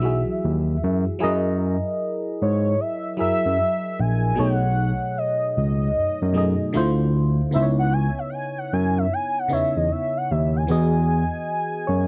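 From the first moment a velvety, vibrato-tinged synth lead sings the melody over glassy, bell-like FM electric piano chords colored by chorus and phaser, while a gritty, barky overdriven tine electric piano carries the bass in this dry, close, late-night neo-soul R&B excerpt with a sultry swung feel, moving through lush ninth and thirteenth chords before the FM piano slips in a brief fill at 11.5 seconds.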